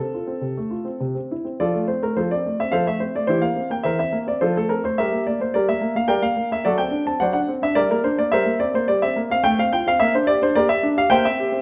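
An intimate, up-front grand piano with audible action noise plays an elegant, cheerful classical-period sonatina in three, its harmony moving between F, G minor and C seventh chords, heard through moderate recital-hall reverb and the worn, warbly pitch drift of old cassette tape in this brief fragment cut from a longer piece.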